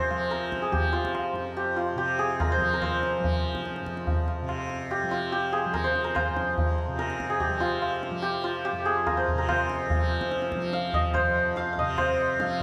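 Longing and introspective, this Hindustani classical excerpt in raga Darbari on F moves at 144 BPM in a straight 4/4. A bright, hammered santur rings up front with the melody between F4 and F5, while a softly plucked tanpura hums a buzzing, shimmering drone between F2 and F3 beneath it. Low-tuned tabla with a short ring joins at 0.1 seconds, and the whole is bathed in a wet reverb that suggests a large scoring stage.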